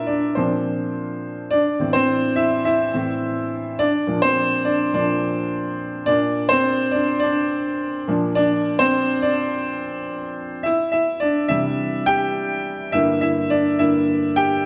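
A clear concert grand piano opens this hopeful, uplifting pop piece, and it carries the whole passage alone from 0.0 to 14.7 seconds. The tempo sits at 105 BPM in a straight 4/4, and the instrument spans G2 to G5, so its deep bass supports an open upper register. The harmony moves from Bbadd9 through Am and Bb, returns to Bbadd9 and Bb, then turns to C at 10.6 seconds before settling on Gm. The piano sounds up front, set in a wet recital hall reverb with a 1.4-second decay that lends the chords a spacious glow. Cut from a longer piece, the passage feels like a bright, forward-looking moment caught mid-phrase.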